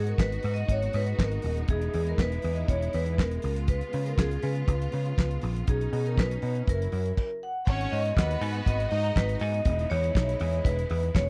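A ringing, metallic vibraphone carries the melody over lush, biting bowed strings and a punchy picked electric bass in this driving, sultry disco excerpt, with a damped 1970s drum kit of tight kick, fat snare, hi-hat, handclaps and crash cymbal joining up front at 0.1 seconds. The band drops out in a brief stop at 7.2 seconds, then a distant, focused violin section adds a second line from 7.7 to 9.4 seconds over jazzy seventh chords. The sound is dry and close in a 1970s studio manner, with a faint mains hum beneath.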